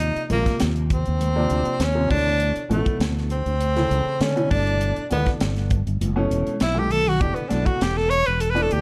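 Electric jazz fusion at 100 BPM in a straight 4/4, bright and soaring, cut from a longer piece, with a bright, up-front tenor saxophone soloing throughout, its vibrato and soft attack carrying the melody over a smooth, vintage grand piano and a growly fretless electric bass treated with ensemble chorus. A crisp fusion drum kit with a high-tuned snare and punchy kick drives the groove, adding a fill between 6.5 and 7.2 seconds, while very quiet, ringing congas sit underneath until 8.5 seconds. The harmony moves from Ebsus2 through Dsus2, G69 and F#m7 to E7sus4, framed by moderate studio reverb in a dark production.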